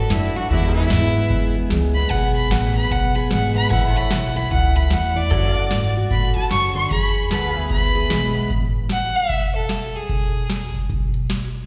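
This easygoing, sunny slice of honky-tonk and classic country opens with a clear, focused fiddle taking a bowed solo up front, with light vibrato and a slapback echo. Beneath it, a full-bodied jumbo acoustic guitar is picked in accompaniment with its own slapback, a clean pedal steel guitar holds sustained chords in the background through a lush chorus, and a woody, thumpy upright bass plays pizzicato on gut strings. A booming analog drum machine comes in almost at once, with a deep kick, crisp snare and metallic hats re-recorded in a small room, swinging at 150 BPM in 4/4. The harmony moves through D, E and A in A major, and at 8.5 seconds the guitar and pedal steel drop out as the piece shifts to a new section over A and E. The fiddle stops at 10.7 seconds, leaving the dark bass and drums to carry on briefly until the bass ends at 11.5 seconds. The whole thing sounds like a live gig heard through the venue's PA, with recital hall reverb and light small-room ambience, and it is cut from a longer piece.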